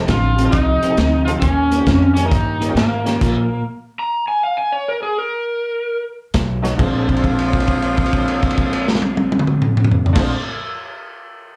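Electric blues shuffle in Bb mixolydian at 134 BPM with a swung, laid-back and soulful feel, heard as a live gig through the venue's PA with club reverb. A bright, overdriven slide guitar carries the melody up front from 0.1 seconds, over a picked, slightly broken-up guitar riff, woody pizzicato upright bass, a jangly detuned honky-tonk piano in the background and a crunchy, saturated breakbeat kit with a punchy kick and dark cymbals, the slide, piano and riff guitar sharing a slapback echo. The band stops from 3.2 to 6.3 seconds while the slide plays on to 6.0, then the rhythm section returns and a raspy, growling tenor saxophone enters at 6.8 seconds, holding one long note with light vibrato until 10.1.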